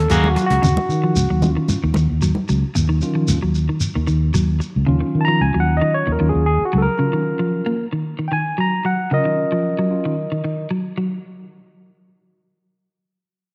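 A moderate echo-chamber reverb surrounds this hypnotic, defiant afrobeat passage, cut from a longer piece and resting on a single minor seventh chord with a lightly swung sixteenth-note feel. Up front, a barky tine electric piano played through a combo amp carries the solo, alongside dark, clean picked electric guitar arpeggios and a round, punchy fingered electric bass that drops out at 6.9 s. Twangy, slightly broken-up guitar stabs and a dry, damped 70s drum kit with a fat snare and hi-hat sound only in the opening half second, while thick-skinned congas sit in the background and a grainy, band-limited shekere shakes on until 4.7 s.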